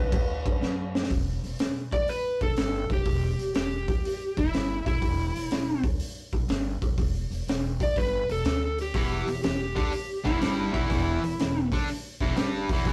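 Swinging at 122 BPM in 4/4, this smoky, gritty blues rock and southern rock power-trio fragment in E minor opens with a brief overdriven slide guitar solo capped by a drum fill, then settles on Em at 1.1 seconds, with the up-front slide melody riding a woody, thumpy pizzicato upright bass and a punchy, saturated garage drum kit with a high-tuned snare and dark cymbals, until a bright, double-tracked distorted electric guitar riff joins at 8.9 seconds, the whole heard in a rough rehearsal-room recording with light reverb and tube saturation.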